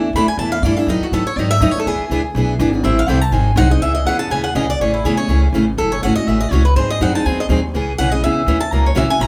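Fiery and virtuosic, this fragment of a longer piece is fast acoustic string swing in the jazz manouche style at 245 BPM, swinging in 4/4 and settling into C# minor from 3.8 s. A bright steel-string acoustic guitar, with fresh strings and audible finger squeak, takes a solo throughout while also filling the accompaniment role. Beneath it, the woody, thumpy upright bass is plucked on gut strings, and from 0.2 s a boxy picked swing-style guitar carries the melody through a plate reverb. The harmony passes through E7sus4, B7 and G#7 before moving through C#m7, Amaj7 and F#m7, with each part up front yet heard from further back in a small, wet room.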